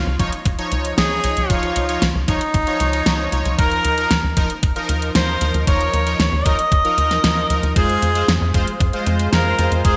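Synthwave at 115 BPM with a driving, moody feel, cut from a longer piece, where a clear, up-front tenor saxophone with vibrato and digital delay sings the melody over a tight, saturated sawtooth sequencer bass, bold detuned analog synth brass stabs with chorus, a thumpy overdriven electronic kick and a layered pop kit with a fat gated snare and metallic hats, while a lush string machine with phaser and sampler grit slips in behind at 7.8 s as the chords move from Dbadd9 through Ebsus2 to Fm, all framed by a bright 1980s-style digital production and a lush hall reverb.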